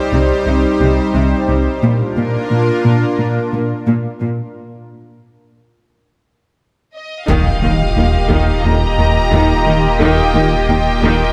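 A straight 4/4 pulse at 88 BPM drives this vast, relentless hybrid orchestral and electronic film cue. It opens on Cm and Bb with a lush, nasal, detuned unison pad up front, a mellow sawtooth synth bass riff and a rich cello section holding the bass in the background, building until a break at 4.6 s strips the harmony away. A focused chamber violin melody enters at 6.9 s, and at 7.3 s the music lands on Ebadd9 as a deep sine sub bass, an intense viola accompaniment, a warm symphonic violin second line, a very quiet dry taiko ensemble and a faint electronic impact join, all set in a moderate scoring-stage reverb.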